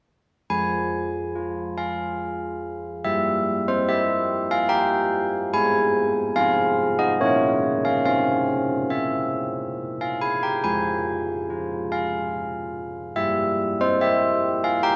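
Carillon bells, bronze and bright with a minor-third overtone and a worn iron clapper, ring up front alone from 0.5 to 15.0 seconds in a solemn, wintry classical church-bell tune in F minor at 71 BPM in 3/4, moving from unharmonized lines to Fm/Ab and Bbm through a moderate scoring-stage reverb and the warbling pitch drift of worn cassette tape in this piece cut from a longer work.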